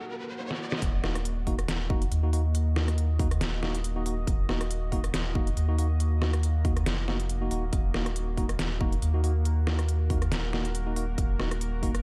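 A swung, half-time groove anchors this heavy, brooding deep dubstep excerpt, where a moody, detuned sawtooth pad with chorus holds sustained chords from the start beneath a brief electronic riser, a short fill on a tape-warmed kit of crisp hats, rim click and a filtered deep snare leads into the drop at 0.8 seconds, bringing a punchy kick and a round, up-front sub bass with tube saturation, and clean tine electric piano stabs with dub echo join at 1.0 seconds in a dry, dusky production.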